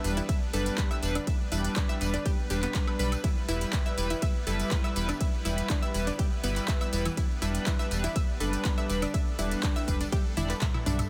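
A punchy, overdriven electronic kick drum sits up front through this dreamy, driving progressive house drop at 122 BPM in E minor, alongside a round, dark analog bass with sidechain pumping, glossy retro polysynth stabs with chorus and dub echo, filter-swept analog pluck arpeggios, an overdriven big-room drum kit of handclaps, metallic hi-hats, ride, tambourine, toms and woodblock that plays a fill from 10.4 s, and an evolving, phased supersaw swell holding sustained chords in the background, all in a dense, heavily limited modern mix cut from a longer piece.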